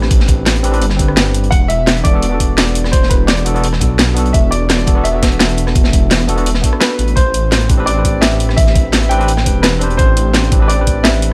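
A studio-ambient mix of liquid drum and bass at 170 BPM in A dorian, this rolling, dreamy excerpt cut from a longer piece sets a deep, rumbling, detuned saw bass up front under a barky, overdriven tine electric piano with tape echo, a knocking electronic kick from 0.1 seconds, a layered kit of cracking snare and bright hats, a gritty, saturated breakbeat kit in the background, and a long-sustaining grand piano melody with tape echo entering at 1.5 seconds over Am11 and E7sus4.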